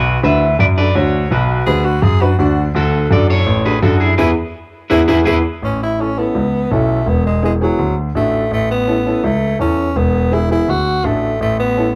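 Sunny and festive, this latin cut moves at a brisk 166 BPM in a straight 4/4, centred on A major and lifted from a longer piece. A grand piano with short sustain holds down the bass from the low register up front, while a clear, woody upright piano with a slightly boxy tone fills in the accompaniment. An electric guitar at the edge of break-up carries the melody for the opening seconds, its fingered, twangy voice coloured by spring reverb until it stops at 5.4 seconds, during a band accent that starts at 4.2 seconds. The raspy tenor saxophone, entering at 1.7 seconds as a second line, then takes a solo from 5.6 seconds onward, bright and gritty with vibrato and a punchy pop edge. The chords move from Bm through D and E into a repeating A, E and D cycle before the harmony drops out near the end, all heard from further back in a small, wet booth.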